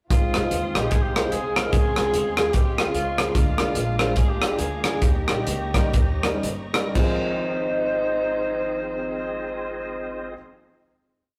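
Uptempo gospel in Ab major with a swung 4/4 feel, this short, hopeful and jubilant piece opens as a breakdown and gradually slows between 3.3 and 7.0 seconds before settling on a final chord. A breathy, whispered alto saxophone carries the song-like motifs in a jazz style with vibrato and a soft attack, joined by a distant horn section that sits back in the mix with light vibrato. Up front, a crisp fusion drum kit with bright cymbals and a punchy kick drives a two-beat praise groove until 7.1 seconds, while a woody pizzicato upright bass walks and runs beneath with chromatic approach notes. An intimate upright piano, with audible action noise, punctuates off-beat chords, and a reedy tonewheel organ adds a sustained pad through a fast rotary speaker and chorus vibrato with key click. A lush, very quiet studio string section holds dark bowed chords underneath, and the whole ensemble sounds like a rough rehearsal-room take, coloured by saturation and a wet stone-room reverb.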